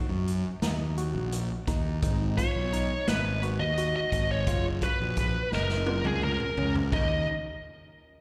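Progressive instrumental band music in 7/8, brooding and intricate, cut from a longer piece and heard as a live gig through the venue's PA with recital-hall reverb. A barky, clean tine electric piano plays arpeggios through a combo amp with phaser, slapback echo and delay. Beneath it sit a growly, up-front fuzz fingered bass and a distant, roomy swinging big-band drum kit with a punchy kick and rolled-off top, which plays a fill from 5.5 to 6.9 seconds. At 2.4 seconds a dark, high-gain picked lead guitar enters with the melody, distorted and up front with its own slapback echo and delay, as the chords move from Ebm through Abm7 to Gbmaj7.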